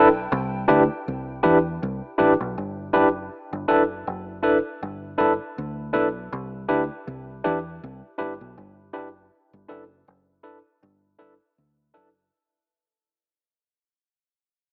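A relaxed 80 BPM pulse in 4/4 with a light swing on the sixteenths sets up this romantic, smooth slice of lovers rock reggae in G major, cut from a longer piece. A barky tine electric piano sits up front as the accompaniment, its clean tone coloured by a medium tremolo and the warmth of a combo amp as it moves between Cmaj7 and G6 in the range from D4 to B4. Beneath it, a deep dub fingered electric bass gives a dark, round, foam-muted bottom, direct and amped, reaching down to F#1 and sitting well under the piano in level. Both parts play from the start, with the piano stopping at 12.1 seconds and the bass carrying on to 12.3 seconds. Light reverb and a small-room ambience give the recording a small-speaker character, and the whole passage fades out from 0.3 seconds onward.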